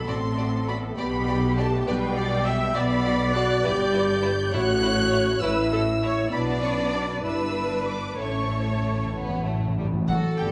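Distant violins carry a focused, vibrato-rich melody high above smoothly bowed second violins, lush up-front violas and mellow sustained French horns, while cellos in the background and double basses hold the bass line and close timpani with medium mallets sound at 4.5 seconds and return with a fill at 8.2 seconds, all in a cheerful, spirited classical-period orchestral passage in 6/8 with rubato, set in a reverberant concert hall and cut from a longer movement.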